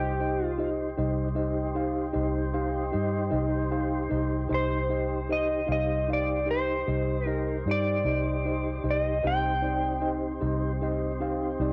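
A slow 12/8 blues with a straight feel, this mournful, brooding fragment cut from a longer piece sits on a single minor chord. An up-front, dark, slightly broken-up slide guitar carries the melody until 10.1 seconds, over a mellow tine electric piano and a clean tonewheel organ with key click and a slow rotary speaker, both with a cassette-tape tint. A round, punchy, foam-muted fingered bass anchors the low end, and moderate spring reverb colors the home-cassette recording.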